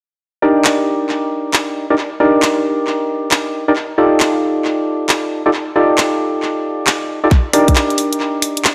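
Soulful and sunny, this short two-step garage excerpt swings along at 135 BPM in 4/4, with a 66% swing on the 16th notes and a bright Eb lydian colour. A percussive organ stab enters at 0.4 seconds, hollow and dark with a fast attack and a decaying tail, thickened by chorus and trailed by analog delay as it moves from Ebmaj7 to F13 and back. Just after, the garage drum kit comes in with finger snaps, handclaps and hi-hat, sitting up front with a layered, tape-warm sheen and a tape echo on its hits. A tight electronic kick punches through briefly from 7.3 to 7.7 seconds, landing as the harmony returns to Ebmaj7. The whole mix is soaked in a moderate echo-chamber reverb with a digital ambience, giving the stabs and percussion a roomy, echo-heavy glow.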